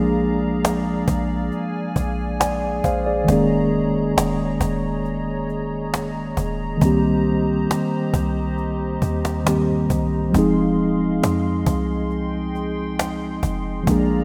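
A mellow tine electric piano opens this contemporary R&B excerpt, sitting up front with a clean, warm tone that sounds as if heard through built-in speakers, while a hollow, flute-like pad holds soft, detuned chords in a higher register with a gentle chorus. Underneath, a deep, boomy 808-style bass with a sine-like body, fast attack and decaying notes anchors the low end. A snappy acoustic cajon with snares enters at 0.6 seconds, close, dry and forward in the mix. The harmony moves slowly through Bb7, Eb7sus4, Cm7 and Fm7, giving the unhurried groove a longing, moody cast. The rough home demo mix carries a light reverb, lending the whole passage an intimate, unpolished feel.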